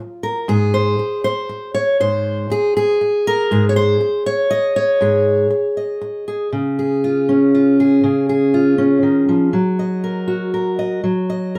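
Warm and pastoral, this short folk excerpt cut from a longer piece features a single fingerpicked steel-string acoustic guitar playing solo in Db major at 120 BPM in a straight 3/4. The guitar sits up front with a bright, fresh-stringed auditorium-body tone, ranging from Ab2 up to Eb5. It opens on an Absus4 chord at 0.5 seconds, settling onto Db at 6.5 seconds as the music moves into a new section, then colours the close with a Gb6 at 9.5 seconds. A moderately reverberant studio ambience surrounds the instrument, lending the lilting waltz-time picking a gentle sense of space.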